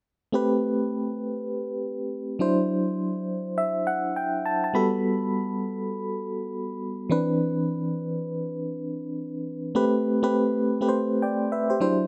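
R&B with a confident, slick mood, this short passage cut from a longer piece moves at 102 BPM in 4/4 with a 16th-note swing, set in A dorian. A lone FM electric piano with tremolo carries everything from 0.3 to 12.1 seconds, ranging from E3 to B5 and sitting up front in the mix. Its tone is mellow, with a fast attack, a decaying body and a noise layer over the FM sound. The harmony moves through Am9, D9, Gmaj9 and Cmaj9 before returning to Am9 at 9.8 seconds, where a new section begins, and a piano fill stands out between 3.3 and 5.0 seconds. A moderate echo chamber reverb with a digital ambience surrounds the instrument, lending it a polished, spacious finish.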